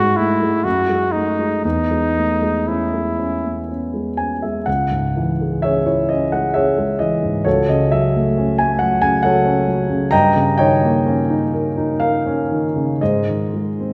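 A trumpet and a dark concert grand piano open together in this solemn, melancholic fragment of a romantic classical duo, set in C# minor in a slow, rubato 3/4 that moves between 57 and 70 BPM. The trumpet carries a brief, warm melody in its lower-middle register, played in a classical style with a soft attack and light vibrato, before falling silent at 3.7 seconds. From there the piano plays alone until 13.9 seconds, its mellow tone and deep bass supplying a sombre accompaniment. Both instruments sit up front, wrapped in a generous scoring-stage reverb that lends the duo a spacious, resonant setting. The harmony drifts through shadowed chords such as C#m, F#m/C# and D#7/G before settling on G#, leaving the passage suspended as if cut from a longer work.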